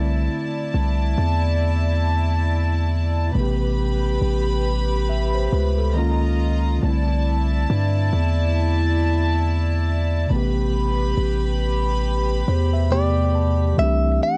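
A swung sixteenth-note feel carries this sensual, longing R&B excerpt, where a deep, sine-toned 808-style bass sits up front beneath a mellow tine electric piano that adds a fill from 12.0 seconds, floating sul tasto studio strings hold sustained chords over the C6/9 and Am9 changes, and a bright, compressed, picked clean electric guitar enters at 12.9 seconds with a brief melody, while the keys, strings and guitar carry a cassette-tape character within a lightly reverberant home recording.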